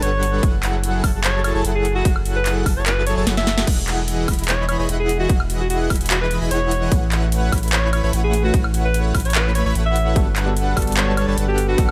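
Euphoric and playful, this future bass clip moves at 148 BPM in a half-time feel in E major, cut from a longer piece and sitting entirely in a drop, where a bright, forceful alto saxophone carries a pop-style solo melody with vibrato and tape echo over a detuned supersaw riff, a deep, thick saturated sub bass up front, and an airy, dreamy lead tucked in the background with arpeggios through chorus and dub echo, all of these pumping to the sidechain. A hard-clipped, overdriven electronic kick joins at 0.4 s alongside a trap kit of sharp snare, metallic hats, handclaps, woodblock, ride and crash, and the kick drops out for a drum fill from 3.3 to 3.7 s as the chords move from F#m7 through Emaj7 and A6. At 10.2 s a clean, bell-like tine electric piano enters on a Gmaj9, all set in a digital ambience.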